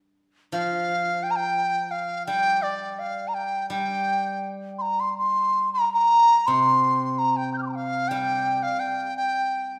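Chinese traditional chamber music in G yu mode, this graceful, wistful passage cut from a longer piece moves at a rubato 83 BPM in 4/4. A mellow bamboo dizi carries the melody up front, its buzzing membrane, airy straight tone and rolled-off highs shaping expressive, tongued lines from 0.5 seconds. Beneath it, a softer steel-string zither played with fingerpicks rings out a bright, silvery accompaniment in its low register, both parts bathed in the wet reverb of a recital hall.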